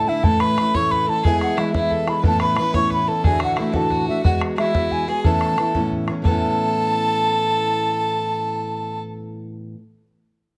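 Celtic folk jig in a lively, cheerful 6/8, cut from a longer piece, with a baroque flute carrying the melody in a pure, wooden tone with vibrato and a soft attack, while a rich, biting fiddle plays an earthy second line beneath it. A dark, boxy fingerpicked steel-string acoustic guitar sits up front as accompaniment through chords such as Aadd9, Dadd9 and Eadd9, and an open, boomy bodhran drives the rhythm until it stops at 6.4 seconds. Close, detailed microphones capture the ensemble within a moderate recital hall reverb.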